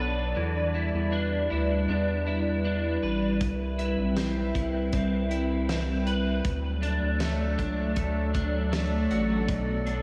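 Blissful and dreamy, this dream pop excerpt drifts at 79 BPM in D major, with a hollow, airy pad holding sustained chords under chorus while a slightly broken-up electric guitar picks arpeggios through ensemble chorus and analog delay, and a round, nasal analog bass sits up front. A loose indie drum kit with a fat snare, tight kick and rolled-off top enters at 3.4 seconds as the chords move from Em7 through Cmaj7 and D toward Bm7. The mix is soaked in plate reverb with small room ambience.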